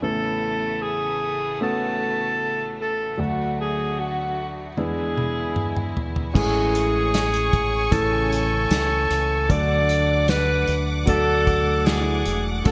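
A breathy alto saxophone carries the melody up front, its soft attack and whispered, jazz-style tone giving this hopeful, heartfelt pop ballad an intimate voice from the very start. Beneath it, a concert grand piano with audible action noise and deep bass supplies the accompaniment, while a rich studio string section holds sustained chords with smooth, even vibrato. An acoustic drum kit played with bundle sticks enters at 4.8 seconds with a fill, its dark cymbals and tight kick sitting in a studio room sound. At 6.3 seconds a new section begins as a mellow French horn section slips in behind with a second line in classical style, and a round, punchy fingered electric bass, run through an envelope filter, joins at 6.4 seconds. The whole piece has a bright 1980s-style digital production bathed in a lush hall reverb, and it is cut from a longer piece.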